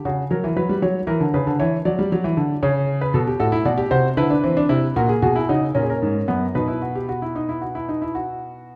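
A solo concert grand piano carries this baroque-style three-part fugue, heard alone for its full 8.8 seconds in a passage cut from a longer piece. The mood is solemn yet driving, moving at 77 dotted-quarter beats per minute in a straight 12/8. The piano sits up front with an intimate, natural tone and deep bass, spanning F#2 to D5, and the clatter of its action can be heard beneath the notes. A recital hall's wet reverb, with a 1.5-second decay, gives the lines space. The harmony moves from F#7 through Bm, F#m7b5/A and F#/A# before settling on B at 6.5 seconds.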